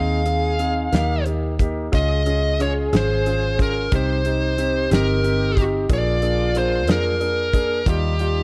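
A slow, straight six-eight lilt carries this tender, heartfelt pop ballad fragment, with a damped 70s drum kit entering at 0.3 s on hi-hat, tight kick and fat snare with a dry, rolled-off top. An up-front, overdriven lead guitar sings the melody in a dark, smooth voice over a concert grand piano with deep bass and an open tone, while a round, punchy foam-muted electric bass anchors the low end. In the background, a mellow French horn section adds a soft-attack second line with light vibrato, all set in light studio reverb within a dark, warm production.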